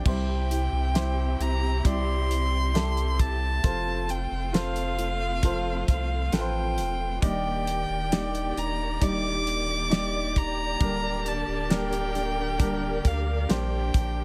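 A small room ambience surrounds this tender, heartfelt pop ballad, a short excerpt cut from a longer piece and moving at a slow 67 BPM in a straight 4/4, tuned to A4 = 439 Hz. Up front, a dark solo violin carries the melody with smooth, even bowing and vibrato, while a bright upright piano with a woody, brilliant tone and long sustain plays the accompaniment. A lush studio string section holds bowed, expressive chords in the background, joined there by a thumb-plucked classical nylon-string guitar playing arpeggios. Underneath, a deep, thick, saturated sub bass with a fast attack sits prominently in the mix, and a damped 70s drum kit, dry and close with a fat snare and tight kick, adds hi-hat and crash cymbal from 0.1 to 14.1 seconds. The harmony moves through C, F, Ebmaj7 and Gm/D.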